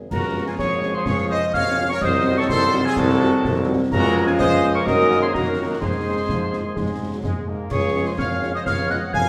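A clear, vintage-toned tuba sets the bass line at 0.0 s, and at 0.1 s the rest of this military-style wind band march joins in, a festive, rousing passage in Db major at 126 BPM in a straight 2/4. A close-miked, tight trumpet section carries the melody with a mellow, soft-attacked tone and light vibrato. Above it a pure, tongued piccolo with vibrato plays a second line, while a roomy woodwind section adds another second line from further off. In the background a bright trombone section holds sustained chords and a dark French horn section, entering at 0.3 s, supplies distant accompaniment. Concert snare drum, clash cymbals with a bright edge and concert bass drum drive the march, and the whole band sits back in a wet recital hall, moving through harmonies such as Db, Cdim7, Ebm/Gb and Ab before landing on Db7 at 8.7 s in this excerpt from a longer piece.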